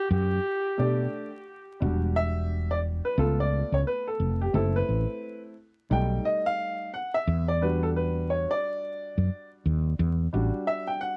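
Dry, close and vintage, with vinyl crackle and light reverb, this cool, nocturnal slice of jazz-hop opens with a breathy, whispered flugelhorn phrase that drifts through tape echo for barely a second. A growly, punchy fretless electric bass with a woody, hollow-body tone enters almost at once, and an upright piano with a smooth, short-sustained sound joins at 0.8 seconds. From 1.8 seconds the piano takes a swung solo over the up-front bass, moving through rich, jazzy minor-key chords to the end of this fragment of a longer piece.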